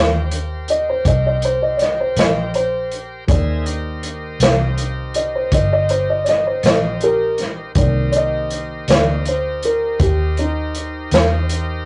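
A slow, straight 12/8 blues, brooding and smoky, sits on a crunchy, gritty breakbeat kit with a punchy kick and a rolled-off top, under a round, foam-muted electric bass. Up front, a dark, boxy baby grand takes the solo, while a bright tonewheel organ, lightly overdriven through a slow rotary speaker, holds sustained chords further back. The fragment has the rough feel of a rehearsal room, with a moderate booth ambience and warm saturation that dulls the high end.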